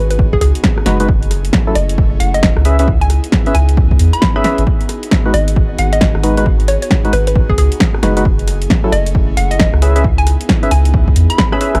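A hollow, bouncy square-wave pluck carries the melody from the opening moment, set over a breathy, airy pad in the background and a deep, round sub bass that sits up front, the pad and bass both pumping with sidechain. This is a soulful, skippy stretch of two-step UK garage, cut from a longer piece, with a swung shuffle in its sixteenths. A punchy analog drum machine supplies hi-hat, rim click and a tape-tinged snare just after the start, and an electronic kick joins at 0.2 seconds, both re-recorded in a small room. From 0.9 seconds a percussive, organ-like stab adds mellow, decaying hits dressed in analog chorus and dub echo, while the pluck carries its own chorus and dub echo. The harmony moves through G#m7, F#m7 and C#m7 under light reverb, and a drum fill arrives at 11.4 seconds to close the passage.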